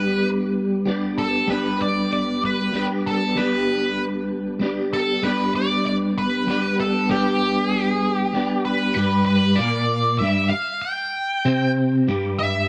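A slow, straight 6/8 pulse at 64 BPM underpins this hypnotic, hazy rock passage in G major, cut from a longer piece. An up-front, bright and twangy twelve-string electric guitar plays a clean, compressed, double-tracked riff through a rotary speaker, while a dark octave-fuzz lead guitar carries the melody with wah, distortion and tape echo. Both play throughout a dry mix, and the harmony shifts from G to a G5 chord at 9.0 seconds.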